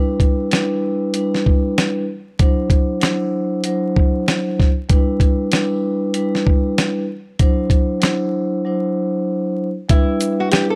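A dry, gritty hardware sound with vinyl crackle and small-room ambience frames this dark boom-bap hip-hop fragment in E minor, cut from a longer piece and moving at 96 BPM in 4/4 with a swung sixteenth-note feel. Up front, a dusty soul sampler-style drum kit sets the pulse with a thumpy kick, a fat snare, hi-hat and shaker, its compressed, grimy character giving the groove its weight. Close-miked vibraphone played with soft mallets and the motor off carries the accompaniment, its mellow, metallic ring outlining a slow alternation of Em7 and D9, filtered at both ends of the spectrum. A break arrives at 8.6 seconds, and at 9.9 seconds a bright, fingerpicked nylon-string guitar enters briefly with a classical-style melody in a narrow range as the harmony returns to Em7.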